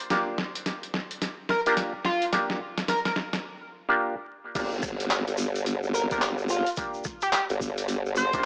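A tearing, edgy sync lead carries the melody from 1.5 seconds, its sawtooth tone bright with chorus, vibrato, cassette-tape color and analog delay, in this funky, playful glitch hop excerpt at 108 BPM in G minor with a 16th-note swing. Underneath, a nasal, stringy auto-wah clav plays up-front stabs over a Gm7 chord from the start, pumping with sidechain and trailing analog delay. A pitched-down, sampler-style boom bap kit with a medium-tuned snare, rim clicks, handclaps, hi-hat and crash builds through a drum fill, then breaks at 3.4 seconds before the drop at 4.6 seconds. At the drop, a saturated, wobbling formant-sweep bass with chorus and overdrive enters up front, joined by a thumpy, tape-colored electronic kick and a grainy egg shaker. The whole mix has a dry, gritty hardware character with vinyl crackle, a small-speaker sound and a moderate plate reverb.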